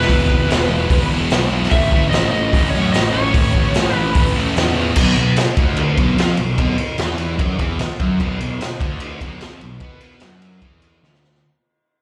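A gritty, swaggering slice of blues rock power trio and southern rock opens at once on all four parts, with a bright, overdriven slide guitar carrying the melody high over a dark, double-tracked sludgy guitar riff. Underneath, a fuzz picked electric bass growls low and direct, while a raw garage drum kit sits up front with a punchy kick, medium-tuned snare, dark cymbals and a saturated, pumping small-room sound. The tempo is a straight 148 BPM in 4/4, moving from E to A before settling on a B5 chord at 5.0 seconds. The slide guitar drops out at 4.3 seconds, leaving the riff, bass and drums to carry on as the music fades out, with a drum fill closing things at 11.0 seconds. The whole performance comes across as a live gig heard through the venue's PA, with a light club reverb and a plate-and-slapback sheen on the slide.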